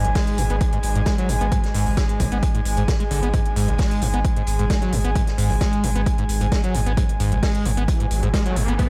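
A squelchy, resonant sawtooth acid riff screams through this intense, industrial stretch of driving peak-time techno at 132 BPM, distorted and pumping with a filter sweep, a touch of chorus and digital delay, over a deep, saturated sine sub bass. Smooth layered electronic hats run from the start, and from 0.2 s a dry, punchy, overdriven electronic kick sits up front alongside a natural-sounding acoustic kit of hi-hat and medium-tuned snare in a studio room. An eerie, metallic FM drone and a soft, breathy detuned pad hang behind the groove, with a background riser building from 7.8 s in this short cut from a longer piece.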